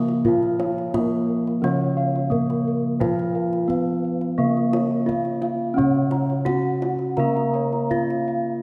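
Bronze metallophones and bossed gongs sound together from the start of this stately, hypnotic excerpt of Javanese gamelan in Bb pelog at 87 BPM. A wooden-mallet metallophone carries the melody up front, a darker horn-mallet metallophone plays smooth accompaniment below, and a padded-mallet metallophone adds mellow, airy arpeggios with shimmering beats from its paired tuning. Round, beating bossed gongs hold the bass, a mid-forward second set of bossed gongs joins the arpeggios at 0.3 s, and a tight, hard-handed kendang enters at 0.1 s, all within a wet concert-hall reverb.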